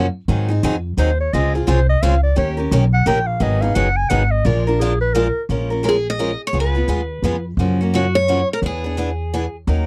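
A dry, close recording with the feel of a 1970s studio captures this short, fiery cut of jazz manouche, swinging at 173 BPM in 3/4, settling into Bb minor from 5.5 seconds. An upright bass with gut strings gives a woody, thumpy pulse up front throughout, while a bright picked steel-string guitar carries the accompaniment, a little finger squeak audible in its playing. A mellow clarinet takes a close-miked jazz solo from 1.0 seconds, its light vibrato floating over a chord movement that runs from Ab7 through Dbmaj7 and Eb7 to Bb7. After the clarinet drops out, a second picked guitar with fresh strings and a boxy parlour tone takes the melody from 5.9 seconds. The harmony there shifts through Bbm7, Db7 and Gbmaj7 before landing on E7.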